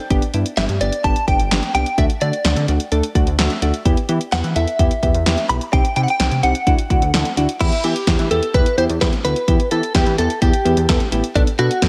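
Nostalgic and upbeat, this synth-pop excerpt in straight 4/4 sets soft, round electric-piano-like synth keys with chorus and tremolo, plus a brief fill around 3.2 seconds, against a glossy, detuned chorused synth bass and a punchy, up-front house drum kit with bright hats and gated reverb, while a bright, clean, direct-recorded electric guitar carries the melody through analog chorus and tape echo from 0.6 seconds, all in a lightly reverberant space moving from G and D through Em and Cm toward a closing Bm7.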